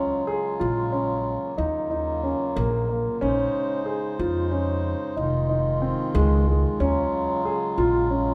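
Contemporary instrumental chamber music in an uneven 11/8 meter, this short excerpt cut from a longer piece carries a shimmering, hopeful mood. A hand-pumped harmonium holds sustained chords from the opening, its reedy, breathing tone giving the texture an airy glow. Alongside it, a dark baby grand piano plays mellow arpeggios placed up front, moving through minor eleventh and minor seventh harmonies. An upright bass enters at 0.6 seconds, plucked pizzicato with a woody, thumpy attack from its steel strings, also sitting up front. The trio shares a moderate recital hall reverb that lends the sound a gentle sense of space.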